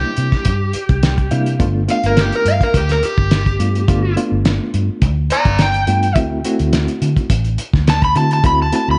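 A straight-eighth soul blues groove at 105 BPM in 4/4 and G mixolydian swaggers along as an overdriven slide guitar takes an up-front solo over a reedy, slightly out-of-tune electric piano with fast tremolo that adds a fill between 0.8 and 1.6 seconds, a dark, foam-muted, round fingered bass, and a cloth-damped, thuddy drum kit with a fat snare and tight kick, all moving through C7, G7 and D7 with moderate spring reverb and a muffled cassette-tape haze in this rollicking cut from a longer piece.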